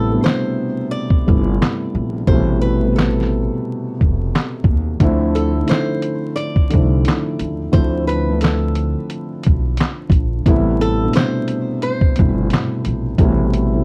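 This short excerpt opens on a dark, warm production with light reverb and vinyl crackle, setting a nostalgic, reflective lo-fi hip hop mood at 88 BPM in 4/4 with a swung sixteenth-note feel in D dorian. A felt-muted upright piano carries the accompaniment up front, its thick felt giving a soft, mellow, intimate tone colored by cassette tape, while a pizzicato upright bass with gut strings sits beside it, woody and thumpy. The sampler-style drum kit enters at 0.3 seconds, compressed, pitched down and muffled, with a thumpy kick, a fat snare, handclaps and hi-hat pushed forward in the mix. Above them, a fingerpicked flamenco guitar plays the melody in a high register, its fresh strings sounding bright against the murk and trailed by tape echo, though it sits lower in level than the rest. The harmony moves from Am9 to Dm9 at 5.0 seconds and back to Am9 at 10.5 seconds, and the clip is cut from a longer piece.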